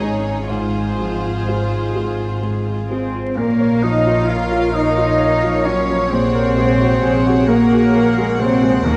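Moving and sorrowful, this short cut from a cinematic film score unfolds in a slow, rubato 6/8, with two floating, sul tasto violin lines carrying the melody and a second line above a clear piano, lush, woody violas, pure, soft-attack cellos and dark double basses. At 2.9 seconds a mellow, hollow flute and a distant, roomy oboe add further lines while a very quiet French horn section holds sustained chords, as the harmony moves from Fm/Ab through Bbm to Gbadd9/Bb. The ensemble sits in a moderate scoring-stage reverb, touched by vinyl crackle and lossy compression artefacts.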